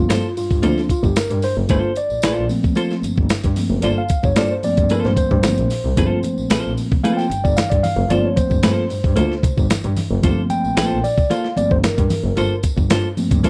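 Hypnotic, driving funk excerpt recorded dry and close in a 1970s studio style, where a mellow tine electric piano takes the solo with stabs over a Gm11 chord, backed by a rich, reedy bowed double bass, a twangy clean electric guitar with lush chorus, a gritty sampler-style drum kit with a thumpy kick, a jingly tambourine in the background, and very quiet low-tuned congas that enter at 6.2 seconds.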